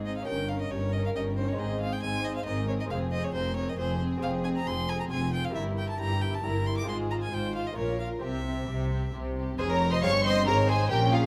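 Close, detailed microphones and a light reverb give this passage, cut from a longer baroque-style concerto movement, an intimate and finely etched sound. The mood is dramatic and driving, at 136 BPM in 3/4 with a straight feel, and the music settles into F minor from 4.2 s. A clear solo violin carries the melody with smooth, even vibrato from 0.1 s, while a rich, focused violin section also plays the melody in the background and a second violin section adds a supporting line. A lush viola section fills the middle, and a bowed cello section and an expressive double bass section anchor the bass. Behind the strings, a mellow, delicate fingerpicked lute with nylon double strings, some doubled at the octave, adds a plucked accompaniment. The harmony moves through chords such as Ab, Fm, Edim/G, Bbm and C before a new section opens on Fm at 9.6 s.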